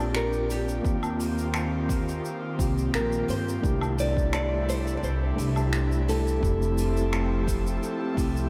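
A dreamy, reverb-soaked mix opens in a moderate cathedral space, its long tail wrapping a smooth, warm-hearted sunset chillout excerpt at 86 BPM in a straight 4/4, centred on C mixolydian. A bright, fingerpicked nylon-string guitar carries the melody between G4 and D5 through analog delay, while a mellow tine electric piano, heard through its built-in speakers, supplies clean accompaniment with its own delay. An airy, breathy pad with a slow attack, long release and chorus holds sustained chords, its detuned sawtooth and noise layer adding a bright edge. Up front, a woody, growly pizzicato upright bass anchors the low end, joined at 0.8 seconds by a deep, overdriven electronic kick re-recorded in a large room, while a natural brush kit with finger snaps, hi-hat, shaker and woodblock sits softly underneath from 0.1 seconds. The harmony drifts from Bb6 through Eb69 and C6 to a closing Fmaj9 at 6.4 seconds.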